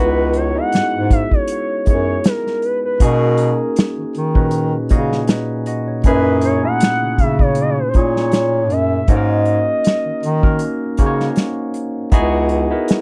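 Smooth and introspective, this neo-soul R&B excerpt sets a gliding, sine-toned portamento lead with chorus and phaser over a barky tine electric piano through a combo amp, a breathy bass clarinet with scooped notes and vibrato carrying the bass line, and a tight acoustic drum kit played with bundle sticks that enters at 0.3 seconds, captured in a dry, close 1970s-style studio sound.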